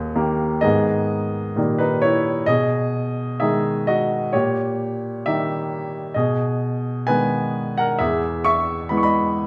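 In a slow, rubato 2/4 at 65 BPM, this bittersweet, passionate romantic character piece in G# minor is played on a solo baby grand piano whose clear, polished tone sits up front and spans D#2 to D#6. The harmony moves between G# minor and D#7, with inversions over A# and B, before turning to E at 8.0 seconds. The piano is heard in a moderate recital hall, and this short passage is cut from a longer piece.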